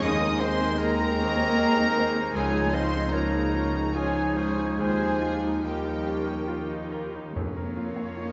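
In a rubato three-beat metre, this moving, bittersweet fragment of an orchestral film score unfolds slowly and emotionally. A violin section carries the melody with a floating, sul tasto softness, while a second, quieter violin line sits beneath it alongside a hollow concert flute and a close-miked solo clarinet, the two winds falling away at 6.9 seconds. In the background, a bright concert grand piano with long sustain and lush, woody violas fill out the accompaniment as a distant French horn section holds dark chords until 7.0 seconds. A smooth-topped cello section and a distant double bass section anchor the low end, and soft-mallet timpani with round calf heads enter at 7.4 seconds, just as the harmony shifts to a minor colour. The recital hall reverb gives the ensemble a spacious, churchlike glow with a gently rolled-off top.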